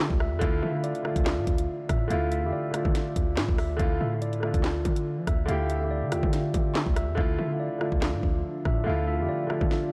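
A half-time drill groove at 142 BPM in D minor drives this ominous, menacing hip hop excerpt, with an electronic kit of knocking kick, sharp snare, handclaps, rim clicks and bright hi-hats (muted from 7.2 seconds) sitting up front beside a punchy, heavy 808-style bass, while a dark, deep concert grand piano and a mellow, filtered tine electric piano playing delayed arpeggios fill out the harmony, and a warbly, lo-fi tape-like pad joins in the background at 7.8 seconds.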